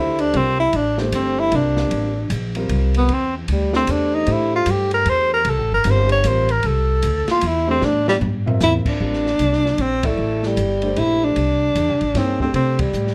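A swung waltz feel in three drives this modal jazz passage, cut from a longer piece, with a searching, cool mood. The breathy tenor saxophone sits up front and carries the melody, opening with a solo that uses a soft subtone and gentle vibrato. Beneath it, the pizzicato upright bass gives a woody, steel-string pulse, while the concert grand piano adds dark accompaniment with deep low notes and long sustain. The acoustic drum kit sounds small-roomed and smooth, with a boomy kick, a medium-tuned snare, hi-hat, ride, crash, toms and a rolled-off top. A drum fill arrives at 7.8 seconds, leading into a new section at 9.0 seconds, and the band hits accents at 10.0 and 12.7 seconds. Moderate studio reverb wraps the whole group.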